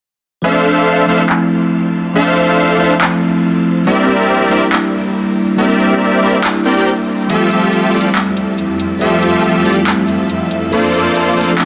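A bell-like tine electric piano, clean and up front through phaser and tape echo, opens alongside huge detuned supersaw chords under a low-pass filter in this bittersweet, lush future bass fragment at 140 BPM in half-time with a swung 16th feel in D minor, moving through Dm7, C7, Fmaj7 and Bbmaj7 as a layered big-room dance kit with metallic hats and handclaps enters at 1.3 seconds under a filter sweep, and an ethereal, shimmering ambient pad with chorus and phaser arrives at 8.2 seconds, all set in a moderate shimmer reverb on a dense, heavily limited modern master.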